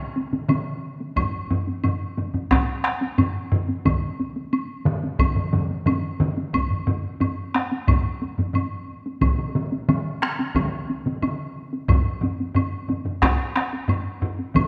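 Heavy-stick taiko drums are the loudest voice in this ceremonial, driving Japanese taiko ensemble piece, sitting up front in a live room alongside a second hard-stick taiko layer, both entering at 1.2 seconds. Two more hard-stick taiko parts open the passage: one close and dry, the other with a vintage, band-limited color. A quieter woodblock with a woody, similarly band-limited tone enters at 0.5 seconds, all within a moderate concert-hall reverb on this straight 4/4 passage cut from a longer piece.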